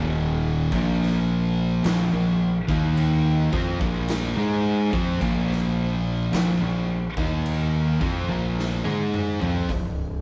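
An up-front, picked fuzz guitar leads this ominous, hypnotic stoner and doom metal excerpt at a crawling 54 BPM, backed by a darker fuzz guitar and a double-tracked, crunchy overdriven guitar in the background, the riff moving from Eb5 to Bb5. A bright, overdriven fingered bass growls underneath from the start, while a raw, saturated garage drum kit with a punchy kick and rolled-off top enters at 0.7 s and plays a fill from 8.6 to 9.7 s. The band sounds live in one stone room with moderate reverb, the drums carrying a pumping, gritty room sound.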